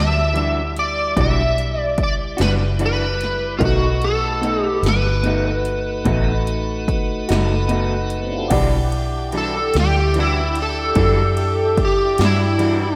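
A dreamy, reverb-soaked mix carries this smoky, mournful slow blues excerpt in E minor at 49 BPM in 12/8, where an overdriven slide guitar with analog chorus sings the melody up front over a round, foam-muted fingered bass, woody upright piano in the background, a piping tonewheel organ with key click and slow rotary speaker, a slightly broken-up lo-fi guitar with harmonic tremolo, and 80s electronic pad drums with punchy kick and gated snare, moving from Em9 to B7 before the slide guitar takes its solo at 8.5 s as a vintage saxophone section with light vibrato joins on sustained chords.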